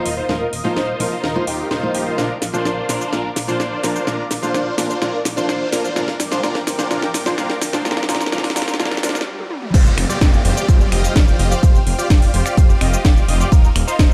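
A woody, fingerpicked steel-string acoustic guitar opens this powerful, euphoric festival progressive house excerpt at 127 BPM, alongside a lush, chorused pad and a huge, detuned supersaw lead riff with phaser and tape echo. All three pump with the sidechain as a thick, menacing saw bass, a house kit with cracking snare and metallic hats, and very faint risers and downlifters build over a filter sweep and drum fills. The guitar stops at 9.1 s, and after a brief stop the drop lands at 9.7 s with a punchy, up-front electronic kick, the chords moving from Fsus2 to Ebsus2 in a dark, warm mix with light digital reverb.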